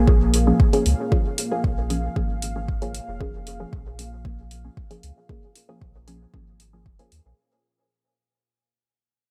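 Dub techno with a hypnotic, cavernous mood, this short cut from a longer piece rests on a single minor-seventh chord and fades out across its whole length. A deep, dark ambient pad of detuned sawtooth and sine layers with a sub octave holds sustained chords, softened by chorus and its own reverb and breathing with sidechain pumping. Underneath, a soft, round dub sub bass sits up front and pumps along with the pad. A muted, evolving chord stab with a filter pluck and short decay adds a mellow, moving layer, treated with chorus, phaser and dub echo. A deep, overdriven electronic kick sits up front and anchors the pulse, joined by an overdriven hi-hat, both carrying the character of a small room, while light reverb gives the mix its cavernous depth.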